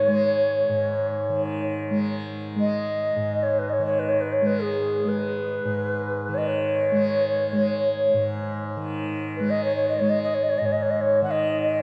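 World meditative music in free time, spacious and haunting, where a mellow, pure-toned cedar flute with gentle vibrato and soft attacks carries the melody over the softly plucked, buzzing, shimmering drone of a tanpura, both sounding for the full 11.8 seconds of this short cut from a longer piece and bathed in a dark production and wet cathedral reverb.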